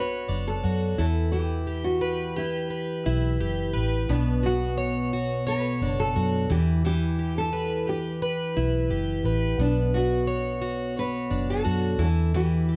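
A straight 4/4 pulse carries this wistful, reflective pop fragment, cut from a longer piece and tuned slightly below standard pitch. A picked, plugged-in twelve-string acoustic guitar sits up front with a shimmering, octave-doubled dreadnought tone, picking out accompaniment from 0.0 to 12.8 s over an alternating Bmadd9 and Em progression. Beneath it, a vintage fingered electric bass gives a round, punchy, foam-muted low end with a dark, amped character. A classical nylon-string guitar carries the fingerpicked melody in a narrow middle register, its fresh strings sounding full-bodied, with audible finger squeak and a plate reverb. The whole mix is heard from further back in a studio room with a short, wet reverb that lends a reflective sense of space.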